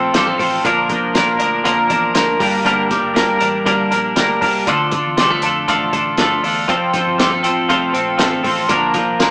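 Two twelve-string electric guitars ring out together from the opening moment of this youthful, breezy slice of jangly indie pop, cut from a longer piece. One, placed up front, plays the chordal accompaniment while the other picks arpeggios, and both share a bright, clean, compressed and twangy jangle. A vintage fingered electric bass sits in the background with a dark, round, foam-muted tone. A cloth-damped drum kit joins at 0.1 seconds on hi-hat, kick and snare, sounding muffled and gritty, with a fat snare, a tight kick and a rolled-off top. The straight, steady groove moves through F, Bb, G minor and D minor before circling back to F and Bb, and the band is heard playing live in one room with moderate reverb, a small-speaker quality and a faint mains hum.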